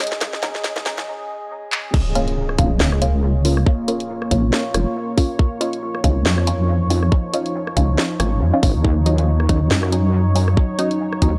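Gritty, dry and high-passed, with a light digital ambience, this excerpt of deep dubstep sits in Bb minor at 139 BPM with a half-time, swung feel, meditative yet heavy. It opens on a build-up where a garage drum kit of cracking snare, hi-hat, handclaps, rim click and crash plays a fill alongside soft, ringing bongos and congas tucked in the background with dub echo, while a filter sweep runs across a moody, detuned ambient pad carrying chorus, its own reverb and vintage sampler grit. Muted, full-bodied dub chord stabs with phaser and dub echo move through Absus4 before a short break. The drop lands at 1.9 seconds with an electronic impact and a tight, up-front electronic kick, and a saturated, wobbling sawtooth bass enters at 2.6 seconds, heavy and compressed with chorus. From there the chords shift from Bbm to Dbadd9 and Ebm7 as the pad, stabs and drums carry the dark, weighty groove to the end.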